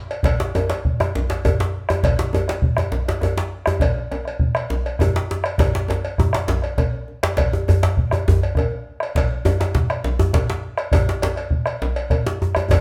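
Powerful and festive, this short cut from a longer West African traditional drum ensemble piece moves at 135 BPM in a 12/8 metre, with a band playing live together in one room under a moderate, large studio reverb. A metallic, band-limited cowbell starts at 0.1 s, joined at 0.2 s by a round, close bombo and a deep, saturated, compressed djembe. At 0.4 s a second djembe comes in up front, tight and cracking with metal rattles and soft hands, and all four keep going to the end at 12.8 s.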